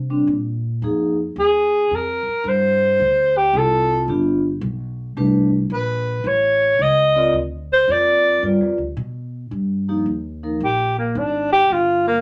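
A 110 BPM swing in 4/4, with swung eighth notes, drives this moody small-group jazz passage cut from a longer piece. From the start, a pizzicato upright bass on gut strings lays down a woody, thumpy foundation, while a vibraphone struck with medium hard mallets, its motor off, adds metallic, ringing chords with a boxy, up-front presence. At 1.4 seconds the breathy alto saxophone enters with a whispered, intimate tone, a soft attack and light vibrato, carrying the melody over a progression that moves through Fm9, Dm7 and G7. At 9.5 seconds the harmony shifts to Fm11 and the saxophone moves into a solo, and the vibraphone stops at 10.6 seconds. A wet studio ambience with a short decay surrounds the group.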